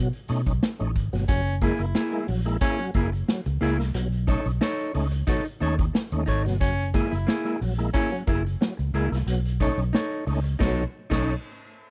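A straight 4/4 funk groove at 90 BPM opens with a break, the vintage drum kit's punchy kick, medium-tuned snare, hi-hat, crash and dark cymbals pumping in a small room under a round, foam-muted fingered electric bass. Gritty overdriven tonewheel organ stabs, thickened by chorus vibrato and a fast rotary speaker, ride over chords moving between B9 and F#9. A clean, dark electric guitar enters at 1.6 s as accompaniment, a clear, smooth-topped baritone saxophone adds a second line from 1.3 to 8.2 s, and the energetic, dry excerpt closes on a band accent at 10.6 s.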